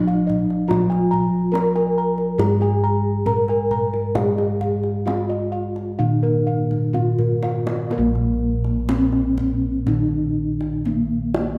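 A bronze metallophone carries the melody with an airy, shimmering tone, its paired tuning producing gentle beats as padded disc mallets draw a mellow ring from each key. This serene, ceremonial passage of Javanese gamelan, cut from a longer piece, moves at 61-72 BPM in a straight 4/4 and sits in Bb slendro, tuned to A4 = 442 Hz. Beneath it, a second metallophone plays a close-miked, dry and full accompaniment in a lower register, while bossed gongs sound deep bass notes with a beating bronze resonance. A higher set of bossed gongs adds round, mid-forward arpeggios placed up front until 7.7 seconds. The kendang, soft-handed and tight yet heard from a distance in a large room, plays a drum fill from 6.7 seconds that leads into a new section at 7.9 seconds. A moderate recital-hall reverb lends the ensemble a gentle halo.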